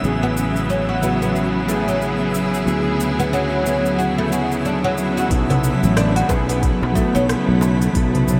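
Mellow electric guitar, a clear, bowed chamber string section with vibrato, growly fretless electric bass, an overdriven electronic kit of crisp hi-hat, cabasa and rim click, and a twinkling granular shimmer open this dreamy, mystical organic downtempo excerpt, with a woody, double-strung oud plucking arpeggios from 0.2 seconds, before a soft, overdriven electronic kick and a dry, metal-shelled darbuka join at 5.3 and 5.5 seconds, all set in a vast wash of reverb.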